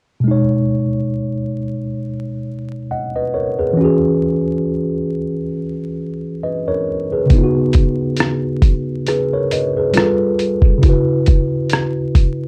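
Nostalgic and mellow, this lo-fi hip hop fragment at 68 BPM with a swung 16th feel in B major opens with a worn, slightly out-of-tune tine electric piano, softened by cassette tape and a low-pass filter, moving through ninth and suspended chords before a dusty, sampler-style drum kit of thumpy kick, hi-hat and rim click enters at 7.3 seconds with overdrive and gritty 12-bit crunch, all set in a dark production with vinyl crackle and a small room's short reverb.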